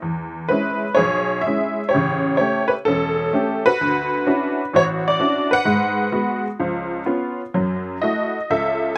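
The sound is dry and close, captured outdoors so the piano sits up front with barely any reverb or room around it. This brief cut from a longer solo jazz piece features a single honky-tonk upright piano, detuned and jangly, with a bright, vintage character that gives the performance a saloon-like charm. The playing swings in 4/4 with a loose, rubato feel, stretching and relaxing the pulse while keeping a warm, easygoing mood. The harmony moves from E6 through A7 and Dmaj9, then passes quickly through G#m7 and C#7 before settling on F#m7 near 7.5 seconds. The piano covers a broad span from deep bass notes up to its upper-middle register, and the slightly sour tuning adds to its lived-in appeal across the full 9 seconds.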